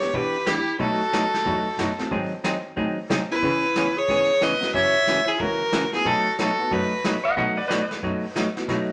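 A clear, focused bowed fiddle carries the melody up front in this playful western swing excerpt at a swinging 183 BPM, with a raspy, growling clarinet on the second line until a clean lap steel played with fingerpicks and slide enters at 7.2 s, all over a picked hollow-body archtop guitar, a dark, woody upright piano with audible action noise in the background, a smooth bowed cello bass, and a vintage brush kit with a tight kick and a pumping small-room sound, in a wet studio reverb.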